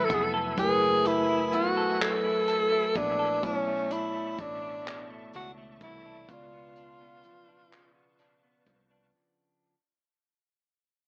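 A breathy tenor saxophone leads this slow, yearning late-night R&B piece in a straight six-eight, its close-miked, whispered lead sitting up front with a soft attack, vibrato and a tape echo trailing behind it. Underneath, a mellow tine electric piano plays clean accompaniment through its built-in speakers, while a semi-hollow electric guitar adds a picked, compressed second line in the background with a subtle chorus. A reedy tonewheel organ holds sustained chords further back, lightly overdriven with chorus vibrato, key click and a fast-spinning rotary speaker. A dark, foam-muted fingered bass gives a round, amped low end, and a compact cocktail kit of kick drum, hi-hat and handclaps enters at 0.1 seconds with a punchy kick, a rolled-off top and its own tape echo. The harmony moves from F#m11 to Bm11 at 3.4 seconds and onto a tense C#7b9 at 6.3 seconds. Bathed in moderate spring reverb and heavy echo, the mix has an AM radio character and fades out across the entire fragment, which is cut from a longer performance.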